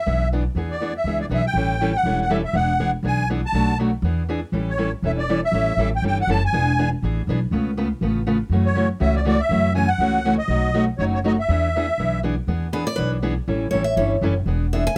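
Swinging in 4/4 at 242 BPM, this playful cut of acoustic string swing in E mixolydian sets a reedy, shimmering musette accordion melody over bright picked steel-string guitar accompaniment and a woody, growly pizzicato upright bass, until the accordion drops out at 12.2 s and a darker second steel-string guitar takes a solo from 12.7 s, with finger squeak audible on both guitars and light reverb around the up-front sound.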